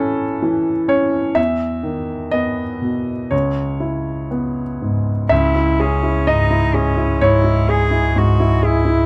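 A grand piano opens this short fragment of a longer neoclassical piece, playing alone in a gently rubato 4/4 with a smooth, vintage tone set up front. Its accompaniment moves from A through E5 to C#m7, carrying a fragile, reflective mood across a span from low bass to the upper middle register. At 5.3 seconds, as the harmony settles on C#m, a single bowed cello enters with a second line. It is played sul tasto, with a soft attack and a pure, floating quality, slightly behind the piano in level. A deep sine sub bass arrives at the same moment, holding a sustained low note with a punchy, pitch-drop attack under a mellow body. Close, detailed microphones and a light reverb keep the sound intimate through to the end at 9.1 seconds.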